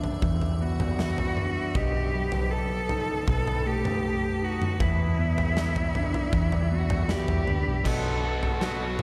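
Brooding and cinematic, this post-rock passage drifts under a lush hall reverb. An icy, crystalline pad holds sustained chords above a mellow electric guitar's arpeggios drenched in chorus and delay, a round hollow-body bass, and a huge arena drum kit with bright cymbals and a punchy kick. A clear, intense bowed cello carries the melody up front from 0.6 seconds, and a twangy lo-fi guitar picks arpeggios in the background from 1.0 seconds. Then a cranked, double-tracked overdriven guitar riff bursts in at 7.8 seconds as the music starts to build.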